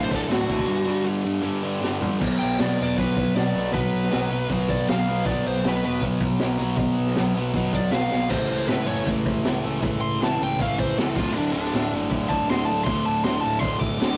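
A straight 4/4 pulse at 158 BPM drives this raw, swaggering garage rock cut from a longer piece, with a muffled, lo-fi breakbeat kit built on a punchy kick, high-tuned snare and gritty cymbals and toms, throwing in fills from 1.8 to 2.2 seconds and again at 8.1 seconds. Up front, a bright, double-tracked fuzz guitar hammers a low compressed riff over a dark, round overdriven picked bass, while a fuzzy lead guitar carries the melody up high and a grainy egg shaker sits distant in the background. The chords move from D and G5 into Bm, then A and D5, all captured as a rough rehearsal-room recording with light reverb and saturated character.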